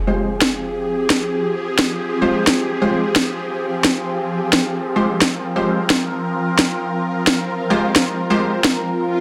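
Dark technical drum and bass cut from a longer piece, mechanical and aggressive, where a swarming, detuned drone holds an Fmadd9 chord under punchy, ring-modulated orchestra-hit-like synth stabs with a filter sweep and dub echo, a cracking, layered electronic snare sits up front from 0.4 seconds, and electronic impact and swell effects open and close the passage in a wet digital room within a dense, heavily limited master.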